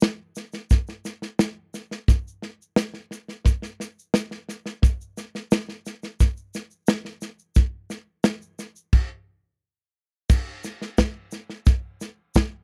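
A natural country drum kit and an egg shaker start together at 0.0 seconds in this short folk cut from a longer piece, moving at a steady 88 BPM in 4/4 with a straight feel. The kit sits up front with an acoustic, airy and polished character, its punchy kick, medium-tuned snare and crash cymbal sounding in a studio room. Behind it, the shaker adds a grainy, bright texture, close and dry and kept well in the background. The mood is uplifting and nostalgic, carried by a dry, close recording in a 1970s studio style with little reverb. The groove runs through an opening stretch before shifting into a new section at 10.3 seconds, and both parts play on until 12.5 seconds.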